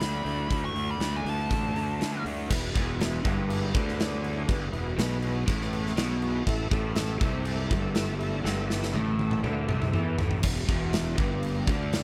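Swaggering and gritty, this short excerpt from a longer piece sits in blues rock power trio and southern rock territory, moving at 121 BPM in a straight 4/4 with tuning pitched to A4 = 435 Hz. A huge arena drum kit drives the whole 12 seconds, up front with a punchy kick, medium-tuned snare, bright cymbals and a pumping hall sound, and it plays a fill from 8.4 to 10.4 seconds. Alongside it, a growly fuzz fingered bass with overdrive sits up front while a crunchy, double-tracked overdriven guitar picks a bright riff through spring reverb. For the opening couple of seconds, a dark fuzz lead guitar with wah and distortion carries a high melody, accompanied by a very quiet, smooth second lead line lower down. From 2.5 seconds a thick overdriven tonewheel organ holds sustained chords in the background, colored by chorus vibrato and a slow rotary speaker, as the harmony moves from D5 through E and A5 to E5, and the overall sound stays dry and loud.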